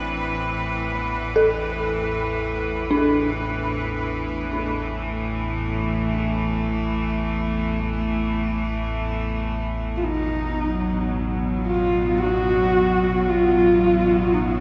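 Desolate and dark, this dark ambient drone piece drifts in free time, cut from a longer work. A deep, ominous rumbling drone with subtle chorus sits beneath a bright, earthy chamber cello section that fades in with sustained, lightly vibratoed chords. From 1.4 seconds an eerie, inharmonic synth bell traces mellow arpeggios through chorus and diffuse delay as it fades out, and at 10.0 seconds a husky, woody horsehead fiddle takes the melody up front with vibrato and portamento, all in a dreamy mix soaked in lush hall reverb.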